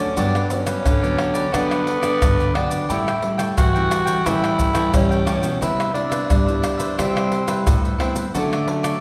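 A straight 4/4 samba and choro groove moves at 88 BPM. It is driven by a deep surdo with maracas, pandeiro and tamborim that come in at 0.2 s, close, dry and up front. The mood is lively and joyful in this short fragment cut from a longer piece. A growling tenor saxophone takes the solo in jazz style, breathy, raspy and gritty with a soft attack, sitting forward in the mix. Beneath it, a cavaquinho adds bright, crisp picked accompaniment, while one nylon-string guitar fingerpicks classical accompaniment and a second supplies a fingerpicked bass line, both with a warm tone. The harmony passes through Gmaj7, A7, Cmaj7 and Dmaj7, and a reverberant recital-hall ambience, as in a church or concert hall, surrounds the players.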